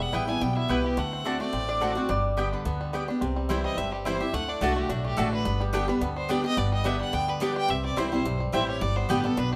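A moderate studio reverb gives this lively, rustic bluegrass fragment a sense of room while keeping the picking distinct. At a brisk 214 BPM in 4/4 and G major, with a light swing on the eighth notes, the band moves through Em, D7, G and C. A clear, bowed fiddle with light vibrato and an earthy, smooth top shares the melody with a twangy, percussive banjo played with fingerpicks. Up front, a dreadnought acoustic guitar with old strings gives woody picked accompaniment, while a thumpy pizzicato upright bass anchors the low end and a mellow, round mandolin adds double-string stabs. A nasal, metallic lap resonator guitar played with slide and fingerpicks enters with a second line at 1.7 s, drops out at 3.1 s, and returns for a brief phrase later in the passage.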